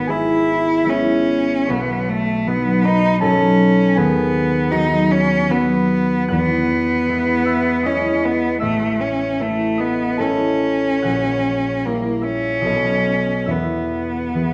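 Classical romantic duo in a tender, warm mood, flowing in a rubato three-beat feel, where a single bowed cello sings a smooth, rich melody with vibrato over a concert harp's ringing, thumb-plucked accompaniment, both set up front in a moderate recital-hall reverb as the short excerpt settles onto its closing chord at 13.5 s.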